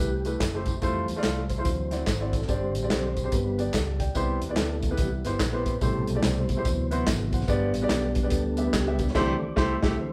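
This reverent, jubilant slice of uptempo gospel opens with a soft, flute-like tonewheel organ taking the solo, its clean tone carrying key click, chorus vibrato and a slow rotary speaker. Beneath it, a warm grand piano plays accompaniment up front, a punchy, amped fingered electric bass sounds round and dark, and a very quiet French horn section holds tight, classical-style sustained chords with light vibrato. The smooth soul drum kit enters at 0.2 seconds with dark cymbals, a medium-tuned snare and a tight kick, followed by tambourine and group handclaps that drop out at 9.1 seconds. Over a swung 4/4 feel, the harmony moves through rich chords such as Fmaj7, D9, Gsus4 and D13 before landing on C6, where the band hits an accent from 9.2 seconds. The group sounds like it is playing live together in one room, set in a moderate large studio reverb.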